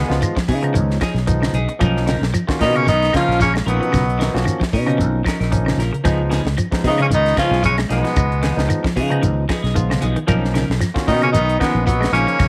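A small room ambience surrounds this driving, hypnotic afrobeat excerpt, which moves at 113 BPM in 4/4 with a light sixteenth-note swing in Db mixolydian, alternating between Db9 and Cbmaj9#11. Up front, a tenor saxophone carries the melody with vibrato and a distant, roomy, pop-style tone. A round, punchy fingered electric bass sits just as close. Behind them, a vintage trumpet with scooped notes and a very quiet, tight trombone section with a smooth top play second lines. Two clean, picked semi-hollow guitars stay in the background, one warm and playing arpeggios, the other dark and playing stabs coloured by phaser and slapback echo, while a bright, barky tine electric piano adds accompaniment and opens with a fill from 0.2 to 1.8 seconds. A dry, polished funk kit with a high-tuned snare and tight kick drives the groove, joined in the background by a grainy shekere and woody claves.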